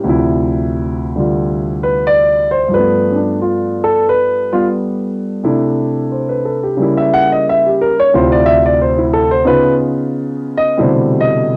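Solo jazz piano with a sophisticated, swinging mood, cut from a longer piece and lasting about 11.6 seconds. A grand piano plays alone throughout, its natural, up-front tone sitting close to the listener and ranging from D2 to F#5. The feel is loosely swung in 4/4 and pushed and pulled with rubato, giving the phrases an unhurried, conversational quality. The harmony moves through rich extended chords, from Dm9 and G9 to C69, then passes through C#dim7 and Db9 before settling on Cmaj13 near 10.8 seconds. A moderate small-room reverb and the intimate character of a home cassette recording lend the sound a homespun, lived-in glow.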